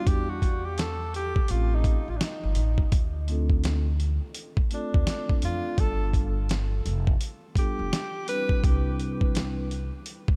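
A breathy tenor saxophone and a soft-mallet vibraphone open this cool, night-time jazz-hop excerpt together, the sax taking the melody as a solo while the vibraphone plays a mellow, ringing accompaniment with its motor off. The saxophone has a jazz-style subtone, gentle vibrato, scooped notes and a smooth top, with a touch of delay trailing its lines, and it falls silent at 9.0 seconds. The close-miked vibraphone sounds dry and full, with a metallic shimmer. A woody pizzicato upright bass on steel strings sits up front alongside a gritty, compressed sampler-style drum kit with a thumpy kick, a fat snare and hi-hat, re-recorded in a small room and swung on the 16ths. The harmony moves through Em7, A7alt, Dm7 and G9 before settling on Cmaj9, all within light, small-room reverb, and the drums carry on alone to the end at 10.4 seconds.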